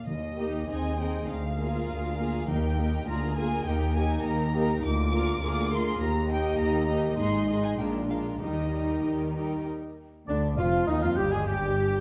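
A quick 2/4 pulse at 101 BPM moves with rubato flexibility through this dramatic, restless classical-period movement in E-flat major, cut from a longer piece, where a rich, focused violin section carries the melody over a second violin line, dark, woody violas, smooth cellos, distant double basses and sustained French horn chords, all set in a wet scoring-stage reverb. Very quiet timpani sound only until 3.0 seconds, and the phrases cadence repeatedly on E-flat before the harmony falls away at 9.7 seconds. At 10.3 seconds a close-miked clarinet, a mellow flute ensemble and a vintage-toned oboe join with second lines as the chords turn toward D minor and F minor ninth.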